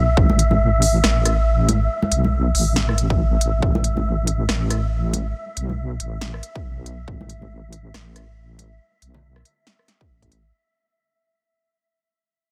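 A deep, detuned wobble bass with a chorus sheen anchors this heavy, brooding half-time deep dubstep fragment, beneath a breathy, wind-like noise texture washed in its own reverb, sparse tape-toned kick hits, ringing soft-handed congas trailing dub echo, and a small-room deep house kit of smooth hi-hats, rim clicks and a punchy snare, the whole passage fading out across its 10.5 seconds.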